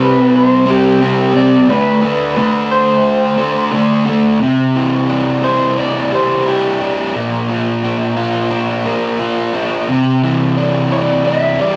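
A double-tracked fuzz guitar sits up front in this wistful, dreamy rock excerpt, its compressed, distorted riff ranging from Bb2 to F4 at a relaxed 88 BPM in straight 4/4. Above it, a bright, twangy electric guitar played through a small old amp carries the melody between G4 and E5, its slightly broken-up, lo-fi tone shimmering with harmonic tremolo. Both guitars are picked and play together for the full 11.8 seconds, with the melody sitting a little lower in level than the fuzz. After an opening section that touches C5 and D5 chords, the music settles into C mixolydian at 4.4 seconds, moving through Cadd9, Bb and back to Cadd9. A small, wet room reverb and the rough feel of a rehearsal-room recording give the fragment a close, unpolished character, with the tuning sitting slightly flat at A4 = 439 Hz.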